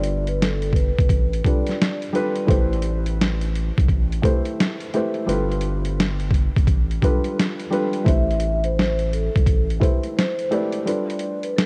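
Hazy and reflective, this lo-fi hip hop excerpt in A minor moves at 86 BPM with a swung 16th feel over a gritty, pitched-down boom bap sampler-style drum kit with a thumpy kick, a deep, saturated sine sub bass that stops at 9.8 seconds, and a soft, felt-muted upright piano with audible action noise accompanying over G7 and Am7 chords, while a ringing vibraphone played with soft mallets, filtered and carrying tape echo and slow motor vibrato, carries the melody in the first 2.0 seconds and returns at 8.1 seconds, the mix coloured by cassette tape and light studio reverb.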